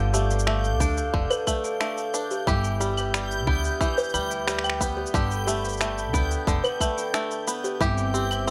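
This hopeful, pastoral folktronica piece opens on a bright, twangy bluegrass banjo playing fingerpicked arpeggios with delay, set over a woody, dark pizzicato upright bass and a soft, warbling vintage analog pad holding sustained chords through chorus. High above sits a dreamy, reversed texture on a single G6, detuned and granular, drifting in its own built-in reverb. A delicate, tinkling music box carries a second line with digital delay, while produced electronic cabasa, finger snaps and claves enter at 0.1 seconds and a tight electronic kick joins at 0.8 seconds, both touched by studio reverb. At 90 BPM in a straight 4/4 and G mixolydian, the harmony moves from Dm/G through Em/G and Gadd9 to Cadd9/G, all resting on G. Banjo and bass sit up front in a lightly reverberant mix of this short cut from a longer piece.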